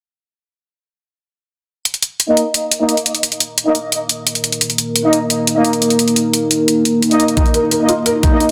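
A straight 4/4 drum and bass pulse of bright, overdriven electronic hi-hats opens this dark, mechanical, technical cut at 1.9 s, soon joined by distant, roomy brass ensemble stabs with light vibrato, shaped by a low-pass filter sweep and digital delay, then from 4.2 s a deep, detuned sawtooth pad with chorus and sidechain pumping, and from 7.4 s a knocking, up-front kick alongside soft, thick-felt upright piano arpeggios echoing through delay, set in a lush hall reverb and a dense, heavily limited modern master.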